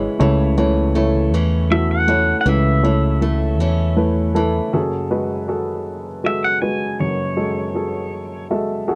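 This acoustic folk-pop ballad fragment in a slow 6/8 feels heartbroken and reflective, with a present baby grand piano carrying the accompaniment throughout and a fingered electric bass sitting direct and up front. A picked archtop guitar adds boxy acoustic arpeggios, and both guitar and bass drop out by 4.8 seconds. From 1.7 seconds, a clean, compressed pedal steel guitar, played with fingerpicks, sings the melody with slide and volume swells until 8.5 seconds, all captured in a dry, close 1970s-style studio sound.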